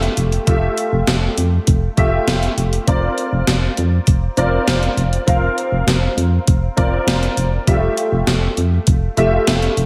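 Uplifting and nostalgic, this short cut from a longer 1980s-style pop piece moves at a straight, steady pace, with a clear, polished baby grand piano playing chords treated with an ensemble chorus over a punchy, round FM bass and a gated digital drum machine with a thumpy kick, hi-hat and a gated-reverb snare. The harmony rests on Fmaj9, shifts to C9sus4/F at 2.9 seconds and returns home at 7.7 seconds, while the tape-tinged, sampler-style drums and the mellow, fast-attack bass sit up front alongside the piano. A lush hall reverb soaks the mix in a dreamy digital ambience.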